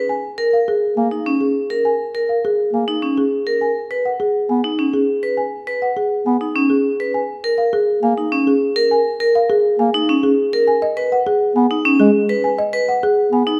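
Meditative yet urgent, this short section of minimalist classical pattern music unfolds in a straight three-beat metre and is cut from a longer piece. A bright, ringing vibraphone struck with hard mallets spins arpeggios from the very start, its metallic tone shimmering with a medium motor vibrato. A folk marimba with medium mallets carries the melody on hardwood bars, sounding woody, rustic and dark, with a dry, smooth attack. From 1.0 seconds a mellow bass clarinet supplies a low, classical-style accompaniment with a smooth top end. All three instruments sit up front, set in a recital hall reverb, while the harmony alternates between A#m7 and G#m.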